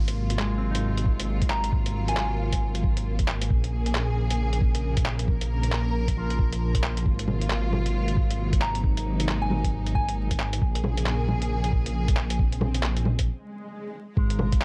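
Future garage at 135 BPM in Bb minor, wistful and nocturnal, with a swung sixteenth feel over vinyl crackle and light reverb as lush bowed strings hold sidechain-pumped chords moving between Ab13 and Bbm7. A deep, rumbling detuned saw bass with tube saturation sits up front, while a muffled, tape-warm sampler-style kit of bongos, handclaps and hi-hat is joined at 1.1 seconds by a thumpy pitched-down electronic kick. A dark, clean guitar through an envelope filter adds brief gritty phrases with tape echo, a soft, pure FM bell with chorus plays short melodic fragments high above, and an electronic swell fills the break before this excerpt cuts off at 14.6 seconds.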